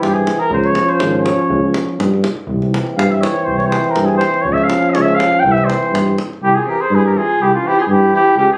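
Captured on a phone in the room with a light touch of studio reverb, this short cut from a longer Balkan brass band piece sounds fiery and virtuosic at 122 BPM in a straight 2/4, set in C phrygian dominant. Up front, a vintage flugelhorn with light vibrato carries the melody as a solo over the first 6.4 seconds, backed by a mellow, close-miked tuba on the bass line. A warm French horn and a soft-attacked, close-miked trombone hold the accompaniment beneath it, while a tight davul drives the rhythm in a small-room sound until 6.4 seconds. At that point the davul stops and a clear clarinet with a gentle attack enters as a second line, playing through to the end at 8.6 seconds. The harmony sways between C and Db before settling on C from 5.4 seconds.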